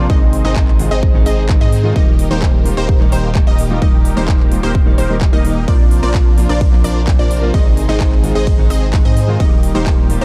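A punchy, tape-warm electronic kick sits up front in this triumphant, uplifting stretch of festival progressive house, cut from a longer piece and driving a straight pulse from 0.1 seconds. Beneath it, a deep, thick saturated sub bass pumps against the kick, while a detuned sawtooth supersaw stab carries the riff with a fast attack and a phaser, echoed by digital delay. Further back, a lush unison pluck spins bright, decaying arpeggios in a high register, and a clear concert grand piano adds intimate accompaniment with audible action noise, both pumping and trailing delay repeats. A very quiet chamber string section holds sustained chords with a dark, nasal, reedy gut-string tone, and a big-room dance kit fills in with handclaps, crisp hats and ride cymbal. The harmony moves through Ab, Eb, Bbadd9 and back to Ab and Eb, framed by a dry, dark production with little reverb.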